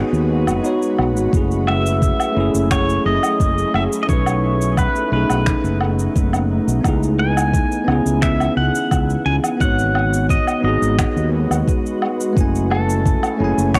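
A sunset chillout piece in F# dorian at 87 BPM opens with a pedal steel guitar, a bell-like tine electric piano and a shimmering ambient pad, joined at once by a mellow fretless bass and a layer of electronic cabasa, woodblock and finger snaps, with a gritty, thumpy electronic kick entering at 1.3 seconds. The mood is wistful and relaxed, moving through G#m7, F#m9, B13 and C#m7 chords over a straight 4/4 feel. The pedal steel carries the melody with a clean, fingerpicked slide tone, volume swells and tape echo. The bright electric piano supplies accompaniment through an analog delay, while the ethereal, detuned pad sustains chords in the background with chorus and reverb. The round, dark bass sits up front, the percussion sounds re-recorded in a small room, and a cassette tape haze colours the guitar, piano and pad in this home recording cut from a longer piece.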